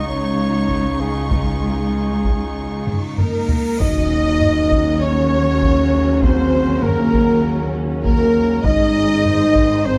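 A straight 4/4 pulse at 99 BPM drives this epic, heroic orchestral film-score excerpt in Eb dorian, with a taiko ensemble entering at 0.7 seconds on heavy sticks and a drum fill from 2.9 seconds building through a huge, bright cymbal swell into an impact at 3.8 seconds. A lush, vibrato-rich violin section carries the melody over a second violin line, smooth violas, dark, tight French horn chords, stabs from a solo trumpet, and woody double basses paired with soft-attack cellos on the bass. Around that point a mellow, pure flute ensemble adds a second line and a very quiet trombone section joins on sustained chords as the harmony moves from Dbadd9 to Ebm7 and Ab, captured with close, detailed microphones in light reverb.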